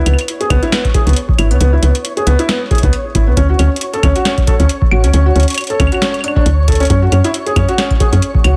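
Melancholic and intricate, this excerpt of swung IDM is built around a felt-muted upright piano playing soft, mellow arpeggios up front, its action noise audible beneath a vintage 12-bit sampler grit and tape echo. A woody FM bass sits prominently in the mix with round, dark notes that strike quickly and decay. A booming analog drum machine supplies claves, metallic hats and a crisp snare through a delay, while an electronic kick drum enters at 0.5 seconds with a deep, tape-warm thud. Far in the background, a flickering, granular texture holds a detuned tone with slow onset and long release inside its own reverb. The harmony moves from C#m7 to Dmaj7 at 3.4 seconds and settles on F#5 at 6.9 seconds, all framed by light digital ambience and a dense, heavily limited modern master.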